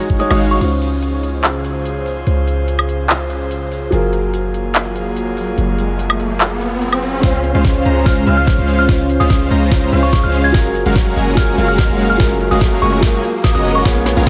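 Light digital ambience and a gentle reverb frame this lush, playful future bass cut, taken from a longer piece and rolled off above 7.9 kHz. At 145 BPM in a half-time 4/4 feel in Db major, a boxy concert grand with long sustain plays accompanying chords, moving from Dbmaj7 to Gbmaj9 under sidechain pumping and dub echo. Beneath it, a deep, boomy 808-style bass with a sine body and a noise layer pumps alongside a soft, breathy pad whose detuned, chorused chords fade in slowly. A tape-warm pop kit of fat snare, crisp high-passed hats, handclaps, woodblock and crash runs throughout, and a background riser enters at 5.3 seconds. At 7.2 seconds the build-up begins: after brief hits in the opening moments, a knocking, up-front electronic kick and a huge, thick, compressed supersaw riff with vibrato and a low-pass filter return with a drum fill. A glassy, crystalline FM bell melody, heard briefly at the start, comes back high above at 8.1 seconds, chorused and echoing.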